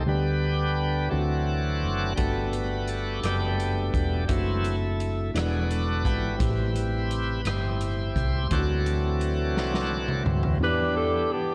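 Heard through the warbling pitch drift of a worn old cassette in a small room with light reverb, this short cut from a slow, jubilant gospel piece in 6/8 opens on a bright, shouting tonewheel organ solo with key click, overdrive and a slow rotary speaker, laid over a mellow, slightly out-of-tune tine electric piano and a round, tube-saturated hollow-body electric bass. A swinging big-band drum kit with a punchy kick and a rolled-off top joins at 2.2 seconds and plays a fill from 9.6 seconds. At 10.6 seconds a clear, up-front saxophone section takes the melody as the organ solo ends, uplifting the closing moment.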